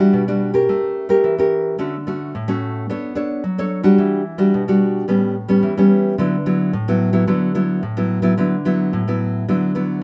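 A straight 4/4 samba groove at 109 BPM carries this yearning yet lively ten-second D major excerpt, where a full-bodied, fingerpicked classical nylon-string guitar plays solo and up front, moving through Em9, A7b9, Dmaj7, Bm9 and A9 to settle on D69 within a moderate studio reverb.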